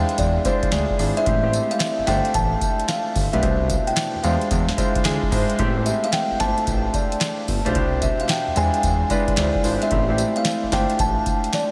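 A woody, ringing kalimba carries the melody in this slick, punchy new jack swing R&B excerpt, set over a clear, intimate grand piano with subtle chorus and audible action noise, a smooth, detuned sawtooth synth bass, and a booming analog drum machine with a deep kick, crisp snare, metallic hats and tambourine. A barely audible group handclap joins at 0.7 seconds, while the swung groove cycles through E7b9b13, Am7, G9sus4 and Cmaj9. The mix is soaked in a huge, dreamy ambient reverb that lends the whole passage a hazy glow.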